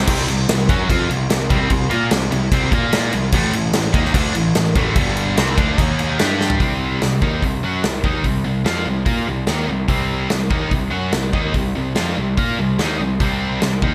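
Driving straight 4/4 at 146 BPM in C dorian, this aggressive, heavy hard rock excerpt pairs an up-front, double-tracked high-gain distorted guitar riff moving through power chords with a growly, fuzz-overdriven picked electric bass and a big acoustic rock kit with a punchy kick, medium-tuned snare, toms, hi-hat and crash treated with gated reverb, all set in a bright 1980s-style digital production, with a drum fill at 6.4 seconds launching the second section on C minor at 6.6 seconds.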